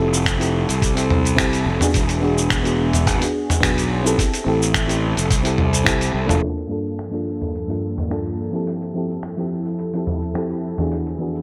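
A growly, overdriven fuzz bass anchors the first 6.4 seconds of this relaxed, smooth sunset chillout excerpt at 107 BPM, beneath a round, dark FM electric piano with chorus and delay, a gritty, tape-tinged sampler-style kit of finger snaps, hi-hat, shaker and toms, and a knocking electronic kick, before a filter sweep runs through the closing stretch and an ethereal, detuned pad with ensemble chorus arrives at 6.9 seconds, the whole set in a bright 1980s-style digital mix with plate reverb.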